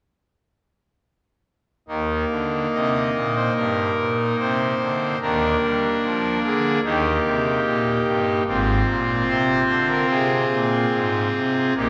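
Moving with a rubato pulse in 4/4 at about 73 BPM, this short cut from a longer classical chorale-style piece in Eb major sounds majestic and serene. A solo pipe organ on its trumpet stop plays from 1.9 to 11.9 seconds, its brassy, bright tone set up front in a romantic voicing that spans Ab1 to Eb5 and moves through Bb/Eb, Eb and Fm/Ab. A wet church reverb that lingers for about 3.9 seconds surrounds the organ, and the listener seems placed further back in the room.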